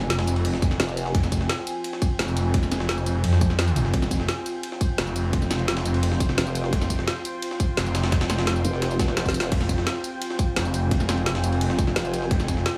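A snarling distorted saw bass anchors this dark technical drum and bass excerpt, growling up front with overdrive and a saturated, detuned edge while it pumps against the sidechain across its low register from F1 to F2. The mood is dark and mechanical at 172 BPM in 4/4 with a straight feel, sitting in F minor over an Fmadd9 chord. Beneath it, a deep, moody ambient pad holds sustained chords with a slow attack and long release, thickened by chorus and its own reverb and also pumping with the sidechain. The drums stack three layers: a tight electronic kick entering at 0.6 seconds, an up-front kit with a woody snare, bright hats, crash and tambourine, and a gritty, pitched-up jungle sampler-style kit with a high-tuned snare, filtered and tape-toned in the background. A formant-sweep wobble bass with chorus cuts in briefly on F1, most notably from 6.4 to 9.5 seconds, where a drum fill lands at 9.2 seconds. 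Light studio reverb frames the whole mix.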